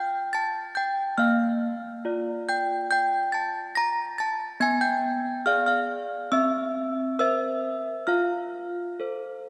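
Heard in the long, wet reverb of a church, this brief cut from a longer classical handbell tune features solo desk bells, close-miked and up front, with a bright, clanky, slightly out-of-tune ring as they move through F, Bb, Bdim7 and C7 before settling back on F at 8.1 seconds, creating a serene yet festive mood.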